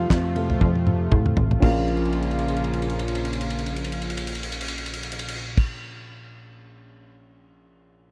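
A dry, close recording in a 1970s studio style carries this driving, dramatic piano-driven pop cut at 118 BPM in Bb minor, with a lightly swung 16th-note feel. A dark, woody upright piano with audible action noise plays the accompaniment over a soft-attack sawtooth pad with chorus and a punchy, funky analog bass with a filter pluck and fast attack. An up-front, damped 70s kit with a fat snare, tight kick, handclaps, ride, crash and toms plays fills from 0.6 seconds, the harmony moves from F to Bb minor at 1.6 seconds, and the pad and bass stop at 5.6 seconds, leaving piano and drums.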